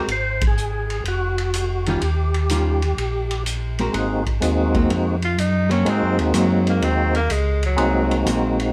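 Swinging eighths at 125 BPM in 4/4 drive this bluesy soul jazz organ trio excerpt in Ab mixolydian, where a fat, lightly overdriven tonewheel organ with key click and slow rotary speaker carries the melody over a round, mellow organ bass line, a dark, compressed hollow-body archtop guitar accompaniment and a vintage kit's punchy kick, hi-hat and dark ride cymbal, with a band accent at 0.3 seconds before a breathy tenor saxophone with scooped notes and vibrato enters at 5.2 seconds, all set in a moderate live-room reverb.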